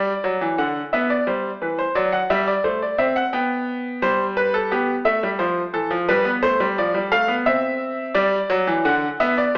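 Elegant and lively, this brief excerpt of a baroque-style two-part invention in 3/4 at 87 BPM features a bright baby grand piano playing solo from 0.0 to 9.6 seconds, ranging from D3 to G5. Its brilliant, natural tone sits up front in a moderate recital hall reverb, while vinyl crackle and an AM radio sound lend the whole an aged, broadcast character. The harmony moves through G, C/G, D7/F# and G/B before passing through F and G7 to C and settling on G.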